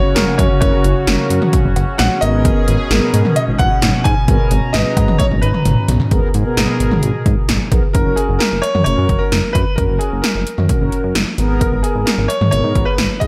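Up-front, overdriven 80s electronic drums with a punchy kick, gated snare and toms, metallic hats and cowbell drive this wistful yet upbeat synth-pop excerpt at 131 BPM in F# major, with a drum fill from 5.2 to 6.1 seconds. A clear concert grand piano carries the melody through a digital delay, over a glossy, pulse-wave synth bass, round, dark synth brass and a shimmering pulse-width pad that holds sustained chords until 7.9 seconds. The harmony moves between F# and G#madd9 within a digital ambience.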